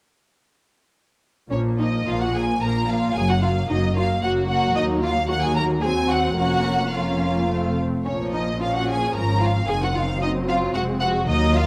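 In a rubato 3/4, this dramatic, stormy classical-period movement for string orchestra, cut from a longer piece, opens at 1.5 seconds with a focused, up-front first violin melody above a smooth, even second violin line, while a soft-attacked viola section with expressive portamento fills the harmony, a cello section sits in the background and a woody double bass section anchors the low end, all bowed with vibrato in light reverb under close, detailed microphones through a chord path moving from Gbmaj13 to Ebm/Gb by 9.7 seconds.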